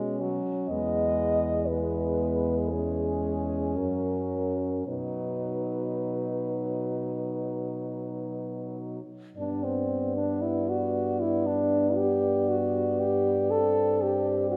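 Rubato 4/4 at a slow 52-60 BPM gives this lyrical classical piece for horn quartet, cut from a longer work, a tender, unhurried breath. Four French horns sound together throughout: a mellow lead with light vibrato and a smooth top carries the melody, while a warm second horn sits up front beneath it with its own line. A third horn, also with light vibrato, fills in the accompaniment from a distant, roomy position, and a dark horn with a soft attack anchors the bass in a low register. The harmony opens in B major, moving through Emaj7 and F# before returning to B, then turns to G major at 9.4 s and closes on a Csus2/G chord at 13.5 s. A moderate concert hall reverb lends the ensemble a gentle, spacious glow.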